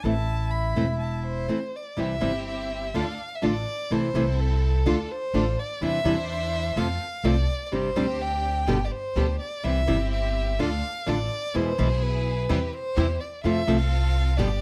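A single bowed violin, warm and expressive with vibrato, portamento and a soft attack, is miked close and up front, and takes a solo from 2.0 seconds to the end. This sultry, tense tango excerpt sits in C major in 4/4 at 126 BPM, with a rubato feel. A reedy, airy bandoneon carries the melody only briefly at the opening, from 0.1 to 1.5 seconds. Throughout, a small-sounding fingerpicked nylon-string guitar supplies accompaniment with audible finger squeak, while a woody, dark pizzicato upright bass anchors the low end. From 2.0 seconds, a clear, focused studio string section adds bowed stabs with vibrato as the harmony moves from C through Dm, F, Gsus4 and G, then to E and F. Light reverb and detailed close miking keep the guitar, bass and violin intimate and present.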